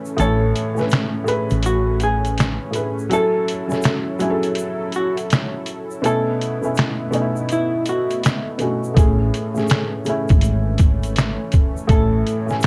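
A moderate studio reverb surrounds this nostalgic, dreamy lo-fi hip hop fragment at 82 BPM in A major with swung 16ths, where a gritty, pitched-down trip hop sampler kit of thumpy kick, snare, hi-hat and finger snaps sits up front beside a felt-muted upright piano with audible action noise, a clean, picked hollow-body jazz guitar carries the low-passed melody, a nasal, detuned unison pad and a grainy egg shaker hang in the background, and a growly fretless bass plays from 0.2 to 2.6 seconds and returns at 9.0 seconds as the chords move from Amaj7 through F#m7 and B9sus4 back to Amaj7.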